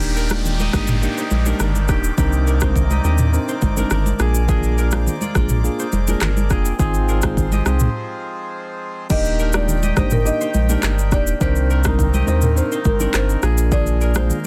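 Dry and densely limited, this sunny, romantic afrobeats excerpt rides on a round, up-front sub bass and an electronic afro-pop drum kit with a deep kick, handclaps, rim clicks, shaker, toms and crash, its snare softly clipped, while thick-skinned congas sit in the background from 0.3 seconds. A clean tine electric piano plays accompaniment through its built-in speakers, a reedy accordion holds full sustained chords, and a bright, fingerpicked kora riff rings through digital delay over Ebmaj7, Cm9, Bb7 and Ab6 chords, as an electronic downlifter sounds until 4.5 seconds. After a short break, a woody marimba played with medium mallets takes the melody at 9.1 seconds, its vintage, band-limited tone carried by digital delay.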